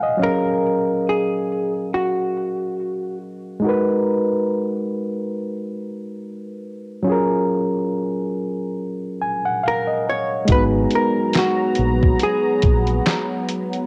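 Lo-fi hip hop with a hazy, reflective feel, where a barky, lightly overdriven reed electric piano plays throughout under a dark, hollow-body jazz guitar melody that returns at 9.7 seconds, before a smooth, detuned analog pad, a round, punchy dub bass and a muffled, pitched-down sampler drum kit with handclaps join at 10.5 seconds, all within a homemade cassette sound and moderate spring reverb in this excerpt from a longer piece.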